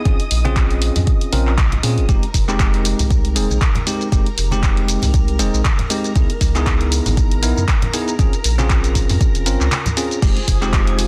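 Deep house at 118 BPM in F minor, this short excerpt from a longer piece has a smooth, warm mood and a gentle 16th-note swing. A deep, round sine sub bass and a layered, tape-warm electronic kick anchor the groove, while a dry, punchy analog drum machine supplies handclaps, hi-hat, shaker and crash cymbal, all set in a small room ambience. Soft-handed congas sit close and dry in the background, and a bright, bell-like tine electric piano plays clean stabs through tape echo. High above, a shimmering vintage string machine of violins adds a sawtooth texture with ensemble chorus, and the strings, bass and electric piano all pump against the sidechain. The chords move from Bbm7 through Fm7 and Dbm7 and back, and after a brief break at 9.7 seconds, a dark, detuned analog pad with soft attack and chorus enters at 10.2 seconds on Fm7. The dense, heavily limited master carries light digital reverb.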